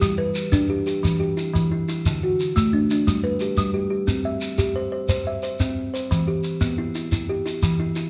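Warm and hypnotic, this short fragment of a longer piece draws on southern African traditional music, built around an interlocking mbira-style cycle in 12/8 with a straight feel. A kalimba carries the arpeggios from start to finish, its thumb-plucked notes short, woody and airy, ringing from a solid board and sitting up front between D3 and E5. A shekere plays percussion alongside it for the full 8.1 seconds, grainy and mellow, also up front yet a little lower in the balance. The harmony cycles through G, Em, D, G and C before returning to Em at 6.1 seconds, giving the pattern a gentle, circling pull. Close, detailed microphones capture every pluck and rattle, while a moderate recital hall reverb adds a soft halo of space around both instruments.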